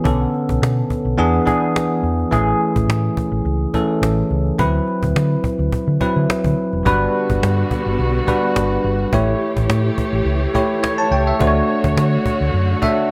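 Polished 1980s jazz-funk pop with a glossy, urban mood, moving with a swung sixteenth-note feel through rich extended chords such as Bm9, D13 and Gmaj7. A bell-like tine electric piano with lush chorus sits up front over a round, punchy hollow-body electric bass and a woody cajon played with soft hands, and the piano slips in a short fill at 10.6 seconds. From 6.9 seconds a distant studio string section adds sustained, expressive chords with vibrato and portamento, all set in a bright digital production with light studio reverb in this excerpt from a longer piece.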